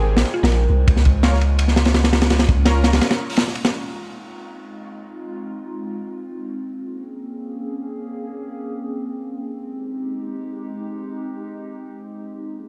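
Atmospheric and nostalgic, this excerpt from a longer drum and bass and jungle piece in F minor and free time opens on a drop where a woody, round FM mallet pluck with dub echo, a nasal band-passed stab with phaser and dub echo, a deep tube-saturated 808-style bass and an up-front, gritty breakbeat kit of kick, snare, hi-hat and dark ride cymbal sit in a dark small-room mix, before a short break from 3.0 seconds leaves the warbling, detuned lo-fi pad with chorus and phaser to carry the Fm7, Bbm9 and Abmaj7 chords alone from 3.7 seconds to 12.7 seconds.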